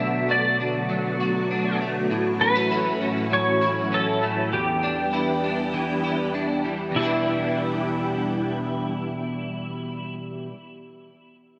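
This melancholic, hazy dream pop fragment at 99 BPM in E minor opens with all three parts together: a twangy pedal steel guitar, played with fingerpicks and slide and full of volume swells, carries the melody through ensemble chorus and delay, over silky, slow-attack chords from a vintage string machine colored by phaser and chorus. Alongside them, an electric guitar at the edge of break-up picks compressed arpeggios through chorus and delay, outlasting the others until 10.6 seconds. The harmony moves from Bm7 to F#m7/A to Em7, and a lush plate reverb with a 3.0-second tail and bright 1980s-style digital production wrap the whole fragment.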